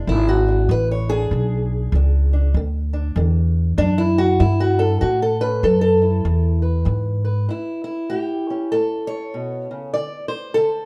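This excerpt of rollicking, laid-back acoustic country blues opens with a fingerpicked old ladder-braced acoustic guitar and a pizzicato upright bass sitting up front together, swinging easily at 97 BPM in 4/4 in A major. The guitar carries the melody with a dark, boxy, woody tone from old strings, ranging from E2 up to D5 and touched with plate reverb, and it takes a steel-string solo through the opening stretch. Beneath it, the gut-strung upright bass adds a thumpy, warm low end before stopping at 7.5 seconds. From there the guitar carries on alone over an A7 change until the chords fall away near 9.9 seconds, closing the fragment at 10.9 seconds. The production is dark and warm, with light reverb around the duo.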